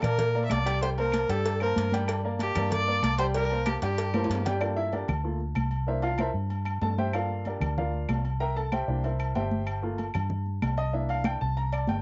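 A nasal, airy-bowed viola with light vibrato carries the opening melody over a festive, danceable salsa groove at 190 BPM, joined by woody upright piano with a cassette-tape tint, a dark, round, foam-muted electric bass up front, damped, high-tuned congas, ringing agogo bells and timbales, a tight cowbell and background claves, and later a drum fill leads to a piano solo from 4.6 seconds over Gm7 and C7 after the viola and cowbell have dropped out, the whole mix sounding like a lightly reverberant home cassette recording.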